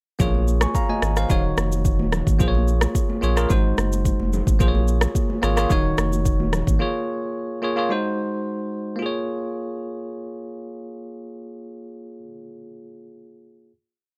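A straight 4/4 afrobeats groove at 109 BPM in Bb minor sets a sultry, hypnotic mood, with an electronic, produced drum kit of deep, soft kick, syncopated rim clicks and shaker sitting up front beside a thick, saturated sub bass whose bouncy, syncopated line slides around the low register. High-tuned acoustic congas ring softly in the background, interlocking as if in a distant large room, while a bright, bell-like tine electric piano pushes spread-voiced Bbm7, Ebm7 and Ab7 chords through its built-in speakers, adding grace notes and short fills. Drums, bass and congas stop at 6.8 s, leaving the electric piano alone to settle on a final Bbm7 at 9.0 s in a dry, gritty hardware sound that lasts until 13.7 s.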